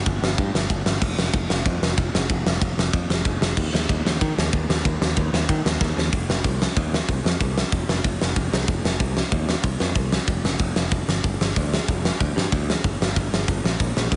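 A big acoustic rock kit and a bright, growly picked electric bass start together in this angry, aggressive punk rock excerpt, pushing a straight 4/4 pulse through to the cut at 14.2 seconds. The drums sit up front in a stone-room sound, with a fat snare, a punchy kick, hi-hat, ride and crash cymbals, and a drum fill at 5.8 seconds carries the music into a new section at 6.1 seconds, while the direct bass drives underneath. Light reverb and heavy, radio-style compression with a capped top end give the mix a dense, squashed character.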